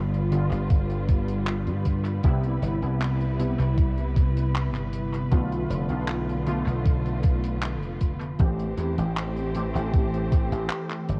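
A tight funk kit of handclaps and hi-hat with analog delay enters at 0.1 seconds, and a thumpy, sampler-style electronic kick joins up front from 0.7 seconds, setting a straight 4/4 pulse at 78 BPM in this melancholic, hazy vaporwave cut in A minor, taken from a longer piece. A dry thumbed slap bass, bright, punchy and foam-muted with tube saturation, holds the low end between F1 and G2. Warbly lo-fi synth keys carry the accompaniment, their detuned triangle and sawtooth tones colored by ensemble chorus, 12-bit sampler grit, analog delay and a filter sweep for a nostalgic, evolving feel. Alongside them, a rich studio string section bows sustained chords with vibrato and a soft attack, spanning C3 to C5. The harmony moves through G7, Cmaj7, Bm7b5 and Am7, all wrapped in an echo-heavy mix with a cassette-tape haze.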